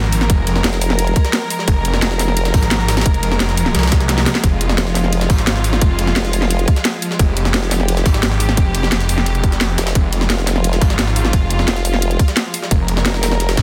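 Dark technical drum and bass with an aggressive, mechanical mood, this short cut opens on an Fmadd9 chord held by a warm, intimate string section bowing sul tasto with vibrato beneath a snarling, detuned saw bass that growls up front through heavy distortion and sidechain pumping. A drum and bass kit of cracking snare and bright hats enters at 0.1 s, followed by an overdriven electronic kick at 0.3 s, while a gritty, pitched-up jungle sampler kit sits in the background and a drum fill lands at 4.1 s. A chorused formant-sweep wobble bass comes in at 0.6 s, drops out, and returns at 4.8 s, all within a dense, heavily limited master with light digital ambience.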